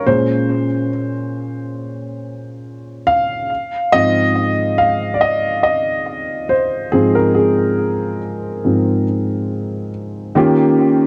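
Heard through the soft haze of a home cassette recording in a small room, this moody, late-night R&B fragment, cut from a longer piece, features a lone grand piano that sits up front, dark and intimate, with audible action noise, tape colouring and an analog delay, drifting over a lightly swung feel from Bbm9 to Ab6 before resting on Eb9 at 10.4 seconds.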